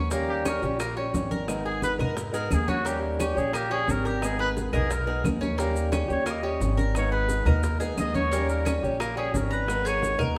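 Nostalgic and warm, this Cuban son and guajira piece at 176 BPM in G# harmonic minor is cut from a longer piece and features a distant, roomy trumpet playing a punchy solo with vibrato over alternating D#7 and G#madd9 chords, backed by a boxy fingerpicked ladder-braced acoustic guitar with finger squeak, metallic double-strung Cuban tres arpeggios, a dark, thumpy gut-string upright bass up front, ringing congas in the background, tight high-tuned bongos, woody claves and grainy maracas, all playing live in a stone room with reverb.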